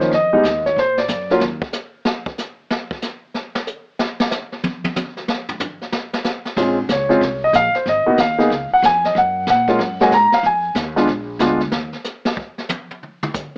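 A brief cut from a longer jazz piano trio opens with the baby grand piano, upright bass and brushed drum kit together, setting a moody, late-night tone in Bb minor at a brisk, swung 186 BPM in 4/4. At 1.4 seconds the piano drops out, the bass follows a moment later, and the brush kit carries a solo on its own, with dark cymbals, a medium-tuned snare, hi-hat, toms and a boomy kick sitting up front in a natural studio room. The trio returns at 6.6 seconds: the up-front piano takes the melody with a warm, long-sustaining tone over a Bbm9, Abmadd9, Db, Gbadd9, Fm7 and Bb7b9 progression, while the pizzicato bass adds a woody, growly low end beneath it. At 11.7 seconds the drums take another solo, with the bass dropping away shortly after, and carry on alone until the cut ends. The whole recording is coloured by light reverb and a worn, warbling cassette-tape quality with pitch drift and a thin AM-radio character.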